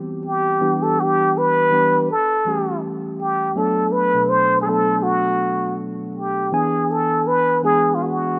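A lightly swung sixteenth-note groove in 4/4 carries this smooth, sultry R&B fragment, where a mellow, clean tine electric piano comps through chords from Cmaj7 to E7 as a breathy, whispered plunger-muted trumpet enters at 0.3 seconds with an intimate, wah-wah jazz solo full of vibrato, both sitting up front in a small room with light reverb and the rough feel of a home demo.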